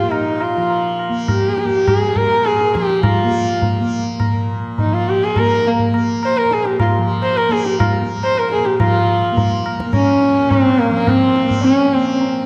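A dark, reverberant concert-hall sound frames this solemn, introspective fragment of Hindustani classical music, set in a five-beat cycle that gradually quickens. Up front, a single sarangi carries the melody with an airy, intimate bowed tone, soft attacks, light vibrato and gliding portamento, its sympathetic strings adding resonance, while a bright, buzzing tanpura shimmers beneath as a softly plucked drone. Low-tuned tabla, close and dry yet ringing, accompanies throughout, and the music moves into a new section at 8.8 seconds.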